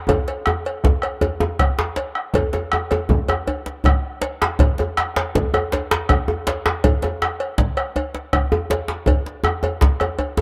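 A pair of hard-handed djembes, one deep and dry, the other tight and cracking, plays alongside a dark, band-limited vintage bombo and a metallic, close cowbell in this festive, driving West African drum ensemble fragment at 107 BPM in 12/8, opening with a drum fill that runs to 2.3 s before moving into the second section, all within a dark production touched by moderate spring reverb.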